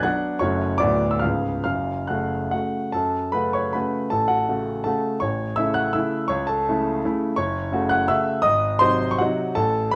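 Dotted rhythms drive this wistful, nostalgic romantic classical dance in 3/4 at a rubato 134-179 BPM in F# minor, where a clear, intimate solo grand piano sits up front with audible action noise and long sustain, ranging from C#1 to F#6 through chords like F#m, C#7 and G#7, all within a moderate large-studio reverb and a worn cassette-tape sound whose warbling pitch drift lends this short excerpt, cut from a longer piece, a faded, memory-like quality.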